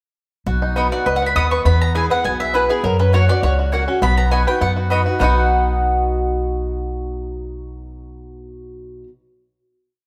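Bluegrass at a lively 203 BPM in B major, this short, rustic piece sets a picked mandolin fiddle tune in running eighth notes over twangy three-finger banjo rolls, bright off-beat mandolin chops, a boxy archtop guitar alternating bass and strum with finger squeak, and an up-front, woody upright bass playing two-beat root and fifth with walk-ups, the band captured live in one stone room before a final chord at 5.2 seconds.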